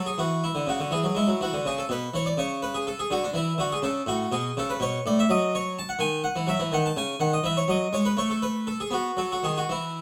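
A solo harpsichord opens this short cut from a longer piece: a baroque-style suite movement in 6/8 that moves at a flowing 82 beats per minute in dotted quarters, played with a gentle rubato. The mood is serene, and the line ranges from A2 up to A5. The instrument is a Flemish-style harpsichord with two sets of strings, giving a full, airy, plucked tone that sits up front. The music begins in A major, passing through colourful chords such as C#madd11, Dadd9 and E7, then turns toward E major at 5.3 seconds with an Emaj9/D# and a C#sus24 before settling on E and reaching B. A moderate stone-room reverb surrounds the harpsichord and lends a sense of space.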